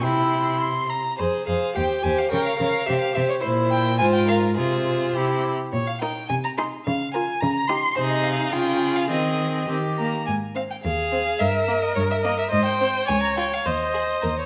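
A rich, focused first violin carries the melody up front, singing between C5 and C6 with vibrato and a smooth top in this quick, dramatic and urgent classical-period movement for string quartet, cut from a longer piece. It moves at 106 BPM in a straight 2/4, with the harmony starting around C and F minor before settling into Ab major from 5.7 s. Beneath it, a clear second violin plays a second line across a broad span, while a close, bowed viola fills in the accompaniment with its own focused vibrato. A rich, even cello anchors the bass, also sitting up front, and all four single players sound through nearly the whole passage, the second violin falling silent just before the end at 14.3 s. The quartet sits in a moderate recital hall reverb that gives the bowed strings a natural sense of space, and the passage closes on Db and Ab harmonies near 14.5 s.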